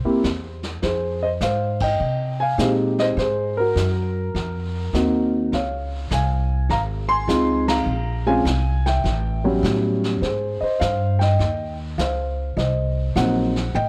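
A dark, mellow concert grand piano carries the melody up front in this sophisticated, playful jazz piano trio excerpt in Ab major at 102 BPM with a swung 4/4 feel, joined by a woody, thumpy pizzicato upright bass on gut strings and, from 0.2 seconds, a softly mixed vintage brush kit with dark cymbals and a rolled-off top, all in light reverb, with band accents landing at 1.7 and 7.6 seconds.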